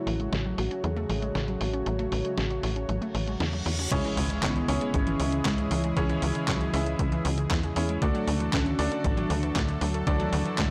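A dry, gritty hardware recording with transformer saturation and a light digital reverb frames this danceable, bittersweet italo disco excerpt in a straight 4/4. A soft, round, octave-layered synth lead carries the melody, colored by chorus, phaser and cassette tape. Beneath it sit an airy, smooth analog pad, a very quiet detuned analog pluck playing arpeggios, and a tight, nasal sequencer bass placed up front. A clean 12-bit drum machine adds a fat snare, handclaps, hi-hat, toms and crash, with its hats, snare, cymbals and toms low-pass filtered. A reverse cymbal from 3.2 seconds leads into an impact at 3.9 seconds. There a thumpy electronic kick joins, and a warm electric grand piano with a clangy low end and vintage sampler grit enters on stabs, as the chords move from F#m/A to C#m and then D.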